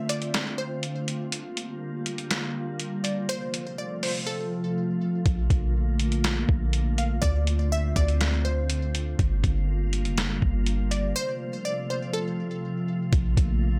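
Atmospheric cloud-rap hip hop in F major at 122 BPM with a half-time feel, floating and blissful, where a crystalline, detuned wavetable pluck carries the melody over sustained ethereal FM pad chords with ensemble chorus, a muffled, thumpy lo-fi sampler-style drum kit re-recorded in a large room drops out from 4.3 to 5.3 seconds, and a deep, boomy 808-style bass enters at 5.3 seconds beneath a Dm7–Gm7–F–Bbmaj7 progression in this excerpt from a longer piece.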